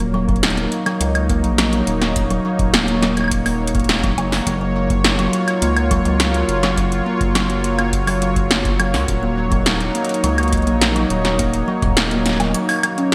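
IDM with a wistful, intricate mood, cut from a longer piece, where a smooth, up-front sawtooth pad with chorus and sidechain pumping sustains D#m7 and F#maj7 chords over a round, deep analog bass with tube saturation, while a punchy analog drum machine of snare, metallic hi-hats and woodblock with gated reverb and a dry, deep electronic kick drive beneath woody, close-miked kalimba arpeggios echoing through digital delay, all set in a lush hall reverb with bright 1980s-style digital production.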